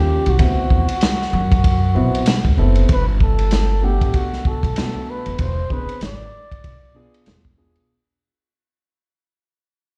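A swung 16th-note groove at 96 BPM in 4/4 sets a smooth, relaxed jazz-hop mood in G major, with a crunchy breakbeat kit entering at 0.3 seconds: a tight kick, a medium-tuned snare, hi-hat and dark ride cymbal, all saturated and gritty with a rolled-off top and sitting up front. Beneath it, a pizzicato upright bass with gut strings gives a woody, thumpy low end, equally forward in the mix. A dark grand piano supplies mellow, vintage-toned accompaniment, its action noise audible, while a breathy flugelhorn carries the solo melody with a soft attack, light vibrato and scooped, whispered notes in a jazz style; both are bathed in plate reverb. The harmony moves from D13 into Gmaj9 as the second section begins at 2.9 seconds, then on through E7b13 and E7b9, while the piece fades out from 2.9 seconds to the end of this cut from a longer piece at 7.9 seconds. The whole recording sounds as if played through a big sound system in a bare stone room, lending a lightly reverberant character.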